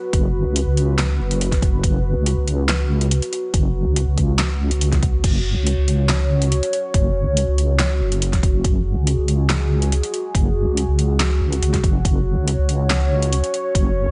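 A half-time 4/4 groove anchors this brooding, cavernous dubstep excerpt, with a layered electronic kick giving a tape-warm thump beside a produced kit of fat snare, handclaps, metallic hi-hats and crash cymbal, both set in small room ambience. Up front, a compressed sawtooth-and-sine wobble bass with a fast attack and chorus sustains low, dark notes throughout, while a quieter, moody analog pad of sawtooth and triangle tones, with a sub octave, slow attack, chorus and phaser, holds sustained chords above it.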